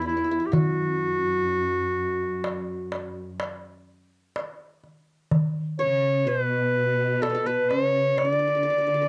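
A home recording on cassette with light reverb carries this festive, passionate fragment of a Turkish makam ensemble piece, moving at 126 BPM in eighths through a straight 10/8. A bright, classical-style solo clarinet leads up front with tape-tinged tone. A mellow, fingerpicked qanun with triple strings shares its register in the background, while a lush, bowed cello section adds a smooth, vibrato-rich second line below. A small, clay-shelled darbuka played with soft hands sits up front from 0.1 to 8.4 seconds.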